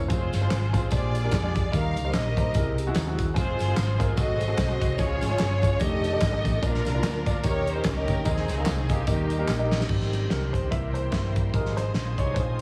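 A dark, round hollow-body electric bass opens this reverent, uplifting uptempo gospel cut at 147 BPM in Ab major with a swung feel, joined at once by a fat-snared, punchy studio drum kit, a clear, deep-voiced concert grand piano, a focused, distant bowed string section carrying the melody, and background tambourine and handclaps; a bright, shouting tonewheel organ with slow rotary speaker and light overdrive enters behind them at 3.4 seconds, and from 9.9 seconds the piano takes a solo over a lush, smooth-topped second string section, the whole mix heavily compressed with a radio-like sound and small room ambience.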